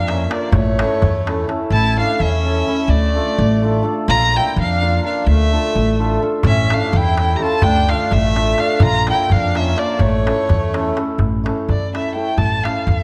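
Restless and bittersweet, this Balkan wedding-band folk excerpt in 5/8 puts a dark, woody bowed violin melody with vibrato up front over a thumpy pizzicato upright bass with steel strings, a reedy accordion second line with slow beating, and a shimmering, ringing hammered dulcimer, while a crisp, deep metal-shell darbuka sits close and dry in the background, dropping out after 1.6 seconds and returning at 6.4 seconds before the violin takes a solo at 11.2 seconds, the room carrying a moderate recital-hall reverb.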